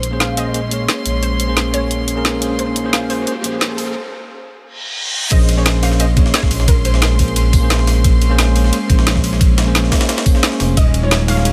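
Bathed in light reverb and a high-pass filter, this soulful, dreamy liquid drum and bass excerpt in Bb minor at 176 BPM builds through a filter sweep and a brief break from 4.0 s, with a background riser and reverse cymbal leading into the drop at 5.3 s: a rich, earthy chamber string section holds sustained chords with sidechain pumping, a smooth, dark, up-front gliding synth bass anchors the low end, a bell-like tine electric piano with digital delay plays accompaniment, a soft, round pluck carries the melody in the background through ensemble chorus, cassette tape and digital delay, and an overdriven drum and bass kit with woody snare and bright hats is joined at the drop by a gritty, pitched-up breakbeat sampler kit with a high-tuned snare and a knocking, overdriven electronic kick.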